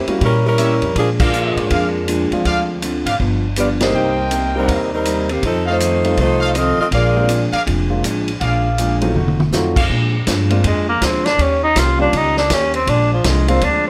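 A clear, close-miked saxophone section carries the melody of this brassy, joyful big band swing excerpt at 161 BPM in Bb mixolydian. Clear trumpet-section stabs punctuate it and band accents land at 1.1 and 3.8 seconds, while a dark hollow-body guitar, woody pizzicato upright bass, a grand piano with audible action noise and a punchy vintage drum kit swing underneath. After a drum fill at 9.2 seconds, a breathy, intimate tenor saxophone takes a solo from 10.7 seconds in a moderate studio reverb.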